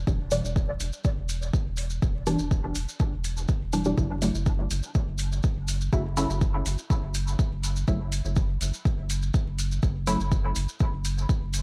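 Dub techno at 123 BPM in F# phrygian, hazy and cavernous, with a round sine sub bass pumping under the sidechain and a deep, layered kick, both up front, as the chords shift from Em7 to F#m7 at 4.0 seconds. Muted, dark sawtooth chord stabs with a short filter pluck sit forward too, coloured by phaser and dub echo until they stop at 10.2 seconds, while metallic analog hats stay in the background and grainy maracas add a live-room shimmer. Vinyl crackle and light digital ambience wrap this short cut from a longer piece.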